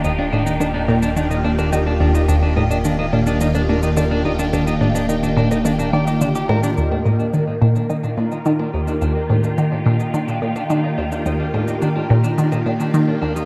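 Ambient, sequencer-driven space music in Eb major at 107 BPM in a straight 4/4, this excerpt from a longer piece feels expansive and cosmic, tuned slightly flat to A4 = 436 Hz and resting on an Ebmaj7 chord. Up front, a juicy, squelchy blip pluck plays a resonant low riff with a fast attack and short decay, treated with phaser and tape echo. A swirling, warbling vintage string machine holds bright, soft-edged sustained chords with ensemble chorus and phaser. A dark, clean electric guitar picks arpeggios through tape echo and fades in across the second section from 6.8 s. A fat, detuned analog bass anchors a deep Eb until 6.7 s, while electronic cabasa and percussion blips add a light echoing texture throughout. The echo-heavy mix sits in a moderate spring reverb.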